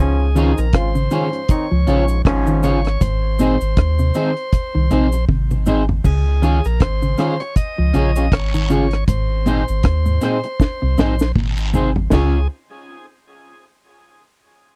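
The dry, close recording has the feel of a 1970s studio, with little reverb around the players. This is an uplifting roots reggae piece in Db major at 79 BPM in 4/4, with a swung sixteenth-note feel, cut from a longer performance. A deep, round, soft dub sub bass and a dark, tight-kicked acoustic drum kit with a high-tuned snare and rolled-off top sit up front, and the kit adds fills around 5.3 and 10.6 seconds. A shouting, lightly overdriven tonewheel organ with a stopped rotary speaker carries the melody. A clear, punchy trombone section plays a second line only until 2.8 seconds. A dark, clean, compressed electric guitar plays fingered arpeggios, while a second, slightly broken-up electric guitar with lush chorus supplies up-front accompaniment, and cabasa and guiro add a faint live-room texture beneath the chords that move between Db and Ab.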